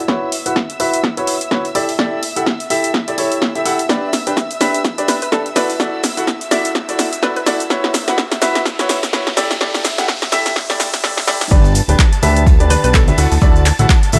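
Euphoric and joyful, this piano house excerpt with a swung groove builds on a clear, vintage grand piano riff under a filter sweep, backed by smooth bowed violin chords in the background, while both pump with the sidechain. An overdriven, dry electronic kick and a punchy analog drum machine with cabasa, handclaps, hi-hat and snare drive the build-up, as a hollow, bouncy square pluck with subtle chorus and delay adds brief melodic touches and a background riser enters at 6.4 seconds. At the drop at 11.5 seconds, a fat, detuned sawtooth bass arrives up front, joined by bright congas and tambourine and a very quiet, gritty low-tuned drum kit with hi-hat and a fat snare.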